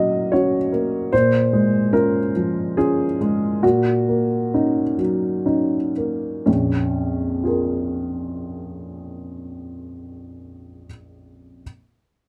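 An upright piano plays alone for the whole 11.6 seconds, its tone woody and a little boxy, with the clatter of its action audible close up. This is intimate, wistful neoclassical minimalist piano in Bb minor, a short portion of a longer piece, moving in a rubato 3/4 between 58 and 75 BPM. The harmony rests over a Bb in the bass, moving from Gb/Bb to Db/Bb and then Ebm7/Bb while the tempo slows through the first 6.5 seconds. A second passage begins at 6.5 seconds on Bbm7, with the piano spanning Bb1 to Eb5. The dry, detailed recording keeps the instrument up front, as if the listener were seated beside it.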